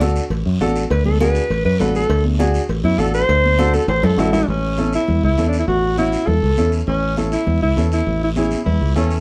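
Heard from a little further back in a moderately reverberant studio, this short cumbia clip has an open, roomy sound and a danceable, festive mood. A dark, round fingered electric bass sits up front with a direct, foam-muted tone, while a woody upright piano with audible action noise gives intimate, natural accompaniment in the middle register. Soft-handed, high-tuned congas play in the background beside a raspy guiro, and close, dry cowbell and timbales with a ringing metal shell come in at 0.3 seconds and drop out around 4.4 seconds, as a drum fill runs from 3.7 seconds. An up-front alto saxophone, warm with vibrato and a smooth top, takes a pop-style solo from 0.9 seconds, bathed in plate reverb as the harmony moves from D to A. At 8.7 seconds a clear, punchy, close-miked trumpet enters briefly on a second line.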